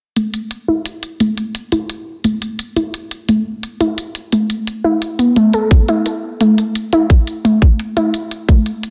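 A half-time drum and bass groove with a loose sixteenth-note swing sets a spacious, dark mood in this short section cut from a longer piece. Smooth electronic hi-hats run throughout, sitting up front, while a tight, layered electronic kick only arrives at 5.7 seconds and lands as the most forceful element in the mix. Carrying the harmony is a warbly, dusty pluck playing arpeggios across a single octave. It blends triangle and sawtooth tones, is detuned and laced with a noise layer, and has a fast attack that quickly decays. Chorus, tape echo and a filter sweep give this lo-fi, gloomy synth its unsteady character. An echo-chamber reverb with a digital ambience adds depth, and the master is dense and heavily limited in a modern way.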